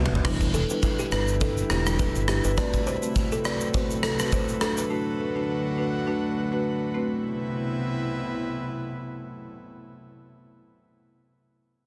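Mellow and sultry, this afrobeats excerpt moves at 103 BPM in A dorian with a light 16th-note swing, opening on a drum fill from a punchy, gated 80s kit with bright cymbals, rim clicks, shaker, toms and a softly clipped snare, while a bright fingered electric bass plays only until 2.6 s and very quiet congas and bongos add brief color. A woody rosewood marimba with plate reverb and a plucked kalimba riff through delay carry the accompaniment over chords moving from Em7 to Am69, Bm7 and back to Am69. A breathy, detuned pad with chorus swells in slowly and sustains to 9.5 s, all set in a small room under a dense, heavily limited modern master.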